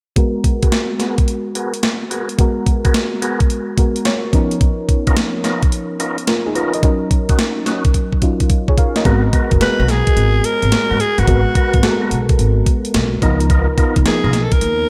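A raspy, gritty alto saxophone takes the melody up front from 9.6 s, its scooped, vibrato-laden notes trailed by delay, in this slick, punchy new jack swing excerpt with a swung sixteenth-note feel. Beneath it, a thumpy, sampler-style 12-bit drum machine with gated reverb drives the groove alongside a warbling FM electric piano with tremolo and tube saturation, while a fat, lightly overdriven tonewheel organ adds percussive stabs with key click and fast rotary speaker. A filter sweep runs through the opening section, which features an electric piano fill midway, a drum fill leads into the second section, and a woody pizzicato upright bass joins at 9.1 s over minor ninth and thirteenth chords.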